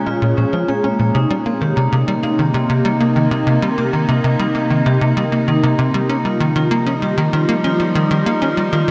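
Over a straight 4/4 pulse, this hypnotic, expansive fragment of sequencer-driven space music sets a tight, punchy sawtooth bass riff up front beneath ringing vibraphone arpeggios with fast motor vibrato and delay, while a detuned, morphing wavetable pad sustains chords from Bbm7 through Cm7 to Ebadd9 at 6.1 seconds, the whole cut floating inside a huge ambient reverb.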